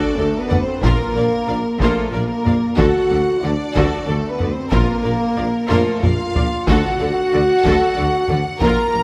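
In a 3/4 at 93 BPM, this heroic, adventurous fragment of an epic orchestral film score sets a clear violin melody in the background over a warm second violin line and rich, intense violas, with dark French horns and clear trombones sustaining chords, a faint huge impact at the start, mellow tuba, distant double basses and very quiet cellos entering on the bass at 0.2 s, hard-stick taiko drums from 0.5 s with a fill at 5.7 s, soft round timpani at 6.7 s, and the chords moving between D and Bb5 in a wet concert hall reverb.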